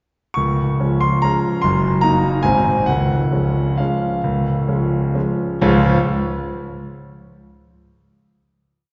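A clear concert grand piano plays alone in this short, complete classical waltz, carrying a single-line melody over a waltz bass in a graceful, playful mood. The 3/4 lilt is shaped with rubato, so the pulse breathes freely rather than ticking evenly. The piano's tone is smooth and vintage, with a deep bass reaching down to Db1 and a long sustain, and it sits up front even as the sound arrives from further back in a concert hall. A wet reverb with a 2.2-second decay surrounds the instrument, and the upper frequencies are rolled off, lending a soft, distant sheen. The brief phrase moves through a simple harmonic turn back home by 2.9 seconds, and the piece closes on a final chord from 5.6 seconds, the piano falling silent at 6.0 seconds as the hall carries the last of it.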